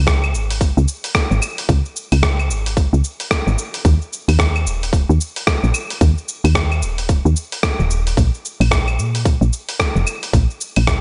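A lightly reverberant, softly rolled-off sound opens this earthy, hypnotic organic downtempo excerpt at 111 BPM in 4/4, swung on the sixteenths and cut from a longer piece. A woody, round FM bass with a fast attack and mellow decay sits up front from the start, pumping under sidechain, while a tight, tape-warm electronic kick joins at 0.1 seconds alongside a gritty, compressed sampler-style soul kit of cabasa, claves, hi-hat and rim click that carries a large-room ambience.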